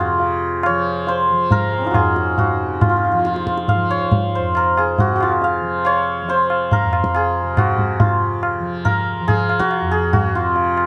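A bright, ringing santur sits up front in this Hindustani classical passage, its hammered melody in raga bhairavi carrying a meditative, longing mood. Beneath it, a softly plucked tanpura sustains a buzzing drone lower in the mix, its tone warm and shimmering. The tabla joins at 0.2 s, high-tuned and close, with a dry, ringing attack sitting just behind the santur. The piece moves in a triple metre with a straight feel, and a new section arrives at 8.0 s and runs to the end of this short cut from a longer performance. Light reverb and a dark overall production give the three acoustic instruments a shared, intimate space.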